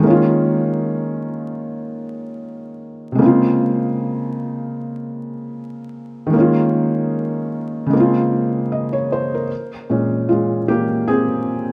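Hip hop with a hazy, melancholic mood and a swung sixteenth-note feel, carried entirely by a felt-muted upright piano that sits up front with a soft, mellow, intimate tone and audible action noise. The chords move between Eb9sus4, Bbm9 and Bbm7, with a new section arriving at 9.5 s, where the piano takes a solo before this fragment of a longer piece ends at 11.7 s. Cassette tape colour, a low-pass filter on the piano, a moderate plate reverb and vinyl crackle give it the rough feel of a home demo.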